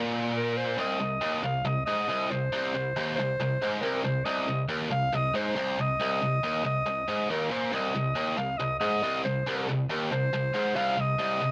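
Lightly reverberant, this short metal excerpt from a longer piece sets a distorted, double-tracked, high-gain electric guitar up front, picking a low riff from the very start at 138 BPM in a straight 4/4. A bright solo clarinet in classical style enters at 0.4 seconds with a melody in its upper register, and from 0.8 seconds the music settles on C minor. The mood is epic and dark throughout.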